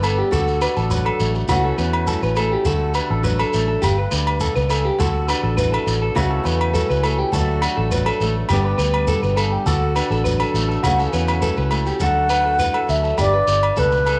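The recording sits in a moderate echo-chamber reverb with a small-room ambience, giving this brief excerpt from a longer piece a close yet gently resonant sound. It is a danceable, joyful highlife guitar-band groove in D major at 103 BPM in a straight 4/4, cycling through D, A6/C#, and G. A fingerpicked steel-string acoustic guitar with fresh strings and audible finger squeak supplies the accompaniment, while an electric guitar at the edge of break-up plays compressed, picked arpeggios colored by phaser and tape echo. Underneath, a vintage muted fingered electric bass sounds dark, round, and punchy up front, joined by close, dry, ringing agogo bells and a grainy, mellow shekere that seems to sit farther back in a larger space. At 12.0 seconds a baroque flute enters up front with an airy wooden tone, crisp attack, and vibrato, carrying the melody over the closing D and G chords.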